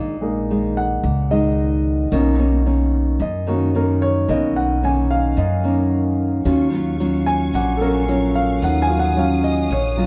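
A wistful, smooth bossa nova cut from a longer piece opens at 111 BPM in a straight 4/4, with a concert grand piano taking a solo up front over full-bodied, thumb-plucked classical nylon-string guitar and a woody, thumpy pizzicato upright bass. The piano sounds intimate and natural, with deep bass and audible action noise, ranging from Gb3 to Ab5, while the guitar and bass sit up front alongside it in the mix. The harmony moves from Gb69/Bb to Bmaj9, then settles on Ebm9 at 6.5 seconds. At that point a dark, lush studio string section enters with bowed, sustained chords carrying vibrato and a smooth top, joined by a grainy, bright, compressed tube shaker. Light reverb and a faint mains hum give the whole production a dark, warm character.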